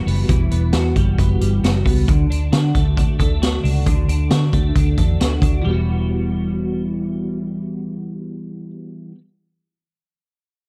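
A dry, close recording with a small-room, 1970s studio character carries this wistful, bittersweet slice of jangly indie pop, cut from a longer piece. A bright, twangy twelve-string electric guitar sits up front playing clean, picked arpeggios through ensemble chorus and slapback echo over an Emadd9 to D progression, while a dark, round, foam-muted fingered bass adds punch underneath. A raw garage kit with a high-tuned snare, boomy kick and gritty, saturated, rolled-off tone drives the first half before dropping out at 5.5 seconds, leaving guitar and bass to carry the closing stretch.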